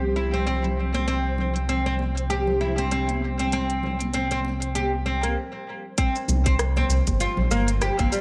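Meditative and mystical, this organic downtempo passage from a longer piece moves at 98 BPM in 4/4 with a lightly swung sixteenth-note feel, resting on a Csus4 chord. Up front, a woody, plectrum-plucked fretless oud with doubled strings plays arpeggios through tape echo, while a dark, gliding synth bass with portamento and vibrato pumps against the sidechain. Behind them, an ethereal, mellow pad holds sustained chords with ensemble chorus, tremolo and a touch of vintage 12-bit sampler grit, and a metallic bronze singing bowl rings, barely audible, until a brief stop at 5.4 seconds. Electronic drums with smooth, filtered hi-hat, rim click and shaker enter almost at once, joined by bright congas set in a distant large room. At 6.0 seconds a tight electronic kick drum arrives to anchor the final section, and the whole mix is echo-heavy with light reverb.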